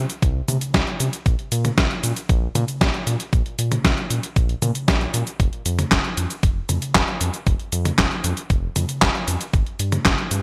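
Italo disco with a danceable, romantic mood in a straight 4/4, cut from a longer piece and running about 10.4 seconds. A round analog bass, deep and dark with a fast attack and sustained, evolving tone, plays beneath an up-front, detuned 8-bit drum machine of cabasa, handclaps, hi-hat, medium-tuned snare and toms, treated with gated reverb, while a thumpy, tape-warm electronic kick joins at 0.2 seconds. The bright 1980s-style digital production sits in a moderate plate reverb, and both drum parts carry a sampler-style, tape-warm character from being re-recorded in a small room.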